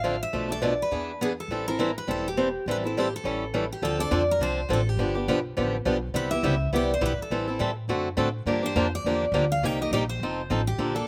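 Acoustic string swing in the jazz manouche style, fiery and virtuosic at a brisk 207 BPM with a swung feel, moving from A minor to D minor at 3.8 s, with chords that pass from Bm7b5 and E7 through Dm7, G7 and Cmaj7 to Gm7, Cm7 and F7. A bright, full-bodied jumbo steel-string guitar picks the melody in a high register, while a boxy, up-front swing guitar with fresh strings drives the accompaniment and a woody, thumpy upright bass with gut strings plays pizzicato underneath. The sound is dry and open, recorded outdoors, and this is a short cut from a longer piece.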